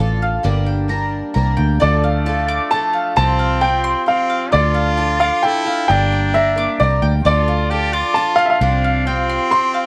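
A woody upright piano carries the melody from 1.8 seconds in this bittersweet, yearning folk excerpt in 3/4. It is joined at the same moment by a distant, roomy trumpet with light vibrato playing a classical-style second line. Beneath them, a shimmering, octave-doubled twelve-string acoustic guitar picks the accompaniment, a round, double-strung mandolin plays arpeggios, and a foam-muted, fingered electric bass sits up front through a short build-up and a cycle of Gm, Dm and Csus4 under light reverb.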